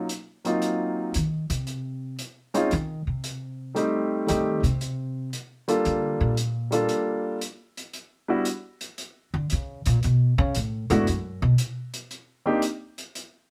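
Sophisticated and relaxed, this short swinging jazz piano trio excerpt features a pizzicato upright bass solo, woody and up front on steel strings, entering at 1.2 seconds, while the concert grand piano carries the melody with a natural, deep-bottomed tone and a dark, smooth hi-hat keeps time, the trio sounding live in one room with light reverb.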